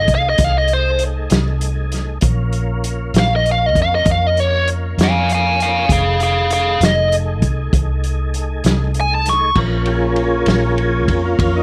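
Smoky and soulful, this slow blues in Bb minor moves at 66 BPM in a straight 12/8, a short cut from a longer piece. A biting, overdriven lead guitar carries the melody from the start, bright and picked and placed up front, soloing until 9.6 seconds. From there the tonewheel organ takes the solo through to the end, having held smooth, clean sustained chords underneath with chorus vibrato and a slow rotary speaker. The muted fingered electric bass sits up front with a dark, round, punchy amped tone, while the vintage drum kit of kick, snare, hi-hat, ride and crash sounds muffled and lo-fi, with dark cymbals, a tight kick and a rolled-off top in a small room. The harmony moves between F7#9 and Bbm, and the dry mix has little reverb.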